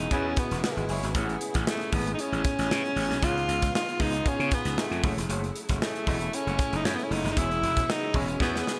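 A breathy alto saxophone opens this short cut of polished 1980s jazz-funk pop. It carries the melody up front with a soft attack, vibrato and an intimate, whispered tone, while a bell-like tine electric piano with ensemble chorus, a lush bowed string section and a growly, overdriven slap bass sound from the first moment under a band accent. A modern studio drum kit with a punchy kick, medium-tuned snare and hi-hat, treated with gated reverb, sits up front beside the bass, and a distant, roomy horn section adds a very quiet second line with octave doubling at the start and again near the close. A dark, clean, fingered electric guitar riff enters at 1.1 seconds, very quiet beneath the keys. The harmony moves through E6, Amaj7, C#7 and F#m7 before returning to E6, where another band accent arrives and a drum fill begins at 8.4 seconds. The mood is nocturnal and bittersweet, framed by bright 1980s-style digital production with light studio reverb and a gently swung sixteenth-note feel.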